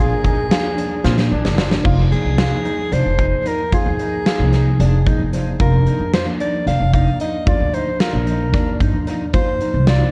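Brooding and intricate, this progressive instrumental excerpt moves in a straight 7/8 with an echo-heavy, cassette-tape character and a light reverb in a studio ambience. A soprano saxophone carries the melody with light vibrato, subtone and scooped notes in a jazz style, its line trailed by dub echo, while a very quiet flugelhorn with a smooth top adds a second line only until 1.8 seconds. Beneath them, a mellow tine electric piano heard through its built-in speakers supplies clean, dub-echoed accompaniment and a short fill at 4.8 seconds, and a fingerpicked twelve-string acoustic guitar spins shimmering, octave-doubled arpeggios with fresh strings and the odd finger squeak. A woody, thumpy upright bass on gut strings sits dark and up front, played pizzicato. A huge arena drum kit in a big room, with a punchy kick, medium-tuned snare, hi-hat and crash, enters at 0.2 seconds with echo on its hits, playing a fill into the second section at 1.9 seconds, while a grainy, band-limited tube shaker is barely audible at the very start.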